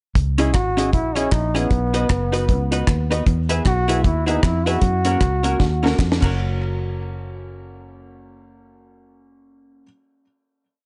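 A bouncy ska beat at 154 BPM in 4/4 swings its eighths, with a dry, dark drum kit up front: tight kick, high-tuned snare, side-stick backbeat, hi-hat and crash, all with a rolled-off top. Up front as well, a round, foam-muted fingered electric bass walks with slides and chromatic approach notes. A clean, compressed hollow-body archtop guitar chops the off-beats, while a woody, slightly detuned upright piano with audible action noise sits in the background, adding off-beat stabs through tape echo. Over this, a close-miked trombone carries the joyful, motif-based melody in call phrases in F# mixolydian, its vibrato and scooped notes also touched by tape echo, with very quiet, crisp group handclaps underneath. After a drum fill at 5.6 seconds, the piece lands on a final hit from 6.4 seconds, all set in a small room ambience.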